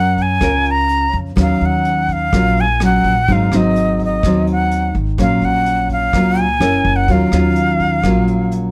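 An airy jazz flute carries the melody up front, its soft attack and expressive vibrato floating over this smooth, intimate bossa nova excerpt in Eb minor at 126 BPM. A full-bodied, fingerpicked nylon-string guitar sits equally forward with a deep classical tone, while a woody, thumpy pizzicato upright bass anchors the low end. Vintage brush drums join at 0.2 s with hi-hat, a tight kick and rim clicks, their rolled-off top heard in a small room, as the chords move from Gbmaj7 through Ebm9 and Ab7 and back to Ebm9 under light reverb.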